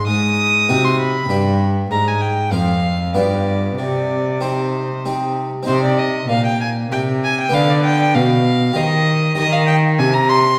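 Heard from further back on a scoring stage with a wet 1.5-second reverb, this solemn, flowing fragment of a baroque-style sonata movement in C minor moves at 98 BPM in 3/4. A single period-style violin with a warm gut-string voice carries the melody up front. A reedy, rich bowed cello anchors the bass, while a brilliant Flemish-style harpsichord, close-miked and dry with octave strings, plucks out the continuo harmony. The harmony moves from Ab7 through G7 to C minor, and a second section from 5.7 seconds turns toward Bdim/D before settling on Eb.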